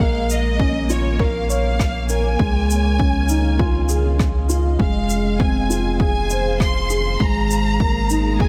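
Lightly reverberant studio sound frames this cinematic, hypnotic piano and strings electronica excerpt in Bb minor at 100 BPM, where a punchy, overdriven electronic kick and a deep analog bass with sidechain pumping anchor a mellow, felt-muted upright piano riff carried by delay, a blurred granular cloud pad holds sustained chords in the background through its own reverb and pumping, a distant, lush violin section sings the melody with vibrato, and a brushy shaker and rim click enter at 0.3 s over chords moving from Bbm through Dbadd9 and Fm to Absus2.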